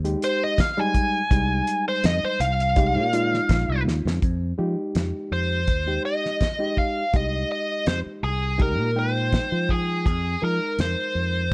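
Light reverb and small-room ambience frame this mournful, soulful straight-eighth soul blues in F minor at 82 BPM over an Fm9 chord, where a bright, biting overdriven lead guitar solos up front from 0.2 seconds, a gritty, reedy electric piano sounds through a combo amp, a round, dark fingered bass holds the low end, and a cloth-damped, thuddy drum kit with a fat snare and tight kick plays a fill at 3.9 seconds before the music moves into a new section at 4.2 seconds.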